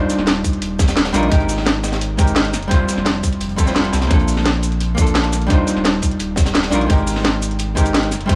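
A dark, clean, picked hollow-body archtop guitar sits up front with dub echo, moving through Ebmaj9, Abmaj9, Fmaj9 and Bbmaj9 chords in this dreamy, warm liquid drum and bass excerpt at 172 BPM in straight 4/4. Beneath it, a tight layered electronic kick enters at 0.4 s, joining an up-front produced kit with a cracking snare and metallic hats and shaker, plus a deep, round sine sub bass with a fast attack and long sustain. In the background, a gritty, saturated acoustic breakbeat kit with a high-tuned snare and a rolled-off top is high-pass filtered, and a light small-room reverb frames the mix.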